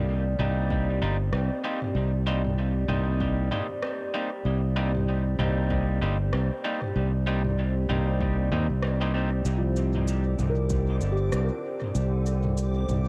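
Lightly reverberant and recorded at home on cassette, this meditative, deep ambient dub excerpt at 96 BPM in C minor rests on a warbling, nostalgic pad of dark chorused chords and an up-front fingered electric bass, while twangy, slightly broken-up guitar stabs with dub echo, an organic electronic kit of cabasa, rim click and toms, and an overdriven electronic kick in the background share a swung 4/4 feel; felt-muted upright piano arpeggios with audible action noise and 12-bit grit arrive at 9.6 s, and a reversed, granular, dreamy swelling texture joins at 10.2 s.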